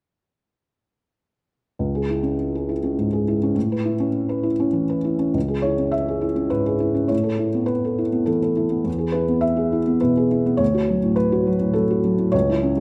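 A dark, felt-muted upright piano plays solo from 1.8 s, close and up front with its thick felt and audible action noise, in this reflective, intimate neoclassical minimalist excerpt at a rubato 103 BPM in 3/4 and C# phrygian, moving through C#m, Aadd9, E and D with a slapback echo on the piano, all set in a lush hall reverb within a rough home demo mix.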